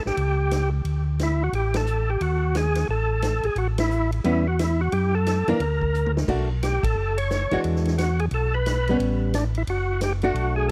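Soul jazz organ trio at a brisk 177 BPM in A mixolydian, bluesy and swinging, where a thick, lightly overdriven tonewheel organ with key click, fast rotary speaker and tape echo carries the melody over a round, dark second organ playing bass through chorus vibrato and slow rotary, a punchy big-room drum kit with crash, ride, hi-hat and toms marking band accents and a fill at 5.9 seconds, and a hollow-body archtop guitar, clean and compressed, joining at 4.2 seconds with picked accompaniment through a dry, close 1970s-style studio sound, cut from a longer piece.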